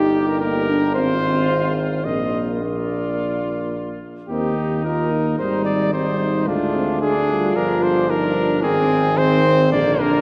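A rubato pulse around 110 BPM in 4/4 carries this brief classical brass quintet passage in Eb major, its mood warm and triumphant. The cornet takes the melody up front, close-miked and rounded in tone, while a clear trumpet with light vibrato and a vintage character sits beneath it on a quieter second line. Mellow French horn and trombone fill in the accompaniment from the background, the trombone's soft attack and close placement lending it a gentle presence. The tuba anchors the bass up front despite its distant, roomy character, its light vibrato adding a glowing depth. All five parts sound together throughout the 10.2 seconds, bathed in a wet church reverb that lingers for over three seconds, as the harmony moves from Eb/G through Abmaj7 and a Ddim to land on Ab, hinting that the music continues beyond this fragment.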